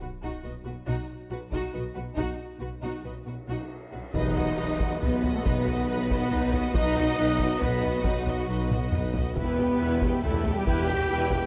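The recording sits on a scoring stage with moderate reverb and a top trimmed at 10.6 kHz, with the close, dry taiko ensemble standing out front. This is a relentless, epic cinematic film-score cue in 3/4 at 138 BPM, cut from a longer piece and moving from B to E minor. Two bowed violin sections carry a lush, vibrato-laden melody and a second line, one warm and expressive, the other dark and woody. Beneath them sit a smooth, even viola accompaniment, sustained chords from a distant, roomy French horn section, and a cello section and a rich double bass section holding the bass. A huge, bright sub drop and impact opens the cue, and the heavy-stick taiko hits join at 1.5 s alongside a very quiet cymbal swell and tam-tam. Around 4.1 s trumpet-section stabs, a classical-style tuba and a very quiet string section with portamento come in beside a second impact and band accent, and a drum fill punctuates the later stretch.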